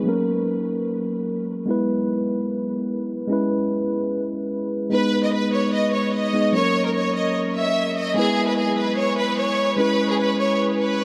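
A rich, focused violin section carries the melody from 4.9 seconds, its bowed vibrato set back in the distance and trailed by analog delay. It rides over a mellow, clean tine electric piano that plays the chords alone for the first stretch of this brooding, eerie half-time hip hop fragment at 148 BPM, tuned to A4 = 437 Hz. A huge ambient reverb soaks the mix in a dreamy haze as the harmony cycles through F#, E and C#m7, with a turn to G#m.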